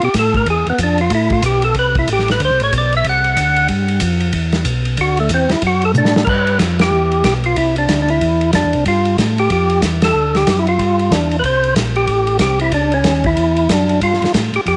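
Bluesy and greasy, this fragment of a soul jazz organ trio swings at 186 BPM in 4/4, sitting in G mixolydian. A fat, lightly overdriven tonewheel organ with third-harmonic percussion carries the melody up front, its slow rotary speaker, vibrato and tape echo giving the lead a thick, churning edge as it takes a solo through the opening 6.3 seconds. Beneath it, a second tonewheel organ handles the bass line, smooth and clean with chorus vibrato and its own slow rotary swirl. A dark, warm soul kit recorded in a small room rounds out the trio with dark cymbals, a tight kick, a medium-tuned snare and toms. A drum fill at 6.0 seconds leads into a new section, where the band hits accents at 6.8 and 10.0 seconds over changes that move through chords such as G6, Cadd9 and Em7. Light reverb and a softened top end keep the whole sound close and mellow.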